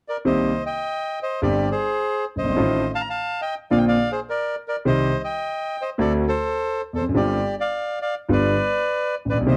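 A reedy, boxy bandoneon carries the melody from 0.1 s, joined at 0.2 s by a smooth, vintage grand piano accompaniment, both up front in this tense, dramatic C minor tango fragment at 104 BPM in a rubato 4/4, moving from Cm7 through Gsus4, F7/A and D7 to G7 under light reverb and a dark, warm production.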